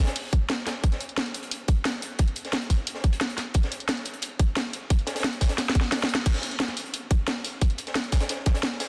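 A gritty, saturated breakbeat kit with a high-tuned snare and dark, rolled-off top opens this tense, aggressive drum and bass drop, joined by a layered, produced kit with a cracking snare and crash cymbal and then an up-front electronic kick drum, all dense and heavily limited in a small room, with a drum fill from 5.6 seconds and a band accent at 6.1 seconds.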